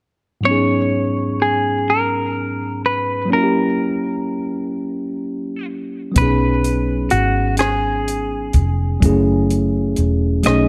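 A slow, straight six-eight sway at 42 BPM carries this sultry, late-night R&B passage in G# minor, where a worn, slightly out-of-tune tine electric piano plays chords moving from G#m11 to F#7b9 while a clean, compressed semi-hollow electric guitar carries the melody up front. At 6.2 s a round, foam-muted fingered electric bass with a dark, amped tone enters together with a compact cocktail drum kit of hi-hat, punchy kick and rim click, its top rolled off, as the harmony moves to B6 and F#m9. Light reverb surrounds the mix.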